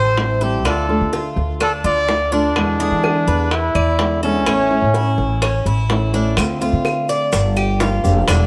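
This is a short, sultry cut of Cuban son and guajira in a straight four, with a plate reverb giving it a moderate bloom. Up front, a breathy, close-miked trumpet carries the melody in an intimate, whispered pop style, mellow with soft attacks and vibrato, until it drops out at 5.9 seconds. Beneath it, the upright bass sits just as forward, plucked and growly with a dark, thumpy tone, while the Cuban tres picks bright, metallic arpeggios on its doubled strings. A fingerpicked flamenco guitar adds warm accompaniment, and tight, high-tuned bongos played with soft hands sound compressed and saturated. Woody claves enter in the background at 0.7 seconds, and grainy, distant maracas join them from 6.4 seconds as the harmony moves to a new section.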